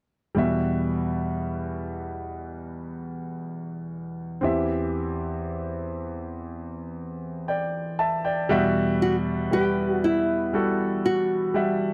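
Emotional and longing, this short pop excerpt moves at a slow 59 BPM in E minor, cut from a longer piece. A clear concert grand piano carries the accompaniment from 0.3 s, sitting up front with an open sound and deep bass, ranging from E2 to A5. The harmony rests on Emadd9, shifts to C/E at 4.4 s, and returns to Emadd9 as a new section begins at 8.5 s. At 9.0 s a fingerpicked nylon-string guitar enters with the melody, small and acoustic in tone, kept within E4 to G4 and given a slapback echo. The recording feels dry and close, like a 1970s studio session, with only a small room reverb around the intimate, up-front playing.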